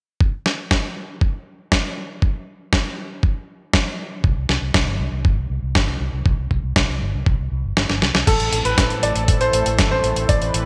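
A melodramatic, danceable italo disco excerpt at 119 BPM in A minor opens with a thumpy, gritty electronic kick and a dusty soul sampler-style kit of crash, hi-hat and medium-tuned snare, both tape-warm and up front, before a punchy fingered electric bass with an envelope filter and tube saturation enters at 4.2 seconds, the kick drops out for a drum fill just before 8.3 seconds, and then a brilliant, worn baby grand piano melody with digital delay and shimmer reverb arrives over a thick, airy, detuned unison pad with chorus, all set in a lush hall reverb with bright 1980s-style digital production.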